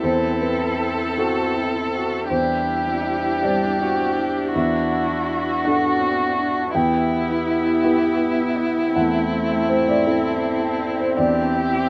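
A felt-muted upright piano and a muted violin open this melancholic, reflective neoclassical passage together, both up front. The piano is soft and intimate, its thick felt giving a dark tone with audible action noise. The single violin carries the melody con sordino, veiled and distant-sounding, with vibrato. A lone cello plays a second line in the background, its soft attacks and portamento adding to the shaded colour. A muted viola adds smooth, lightly vibrato accompaniment while a reedy, breathing pedal harmonium holds sustained chords. A very quiet concert harp contributes thumb-plucked, ringing arpeggios. The music moves at a slow 54 BPM in a rubato 6/8 under light reverb, circling through Am/E, Cadd9/E, Dadd9/E and Em before returning to Am/E around 8.9 seconds, as this 11.9-second passage is cut from a longer piece.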